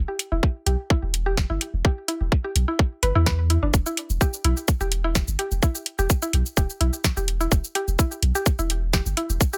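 A tight, layered electronic kick sits up front in this sparse, quirky minimal techno excerpt at 127 BPM in E minor, its 4/4 pulse carrying a light 16th-note swing over a deep, punchy sine sub bass that pumps with sidechain and carries a pitch-drop attack. A booming analog drum machine adds a crisp snare, metallic hi-hats and shaker, while a woody, round, mallet-like FM pluck plays a short riff, dressed in chorus, cassette-tape color, delay and sidechain pumping. The excerpt stays on a single E minor chord in a dry room sound.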